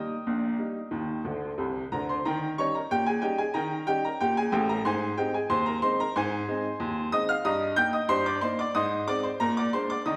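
A bright upright piano rings out up front in a wet recital hall, its woody, brilliant tone carrying long sustain into the room's 1.4-second reverb. This short ragtime piece, cut from a longer work, moves at 92 BPM in 2/4 with a straight feel in Eb major, and its mood is jaunty and playful. The piano plays solo throughout, ranging from A1 up to G6. A fill arrives between 1.3 and 2.2 seconds, closing the opening passage before a longer section takes over at 2.2 seconds. The harmony moves from Eb to Eb7, then through Ab, Eb/G and Ab again before landing on Bb7 near the close.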